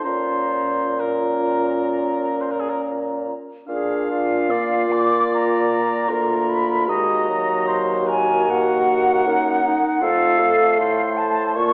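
A hollow, pure silver flute with vibrato sits up front carrying the melody in this elegiac, yearning excerpt of a slow romantic wind quintet movement in rubato, over a distant oboe second line with light vibrato, a warm clarinet entering at 0.1 s, a punchy, smooth-topped French horn in the accompaniment and a mellow, roomy bassoon bass, all set in a wet recital hall heard from further back with an AM radio sound.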